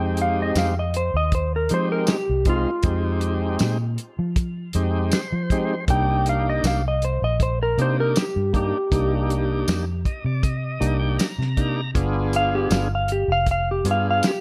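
Smoky and soulful, this straight-eighth soul blues excerpt in C minor moves at 79 BPM, with a dark, clean lap steel guitar carrying the melody through slide and volume swells, a thick, lightly overdriven tonewheel organ with slow rotary speaker and plate reverb comping and adding fills at 4.7 and 9.7 seconds, a round, foam-muted fingered electric bass, and a dry soul drum kit with a fat snare, tight kick, hi-hat and tambourine entering at 0.2 seconds, all over Fm9, Cm9 and G7b9 chords with light reverb.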